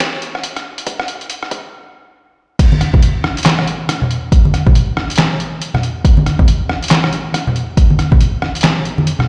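A muffled, pitched-down sampler kit of handclaps, rim clicks, hi-hats, crash and a medium-tuned snare opens this meditative, dark half-time dubstep excerpt, joined at 0.9 seconds by a deep, overdriven electronic kick that sits up front. After a short build-up and a stop, the drop lands at 2.6 seconds, and close, ringing acoustic congas trailed by dub echo enter just after, at 2.7 seconds. The whole mix sounds as if played through a big sound system in a bare room, bathed in large studio reverb.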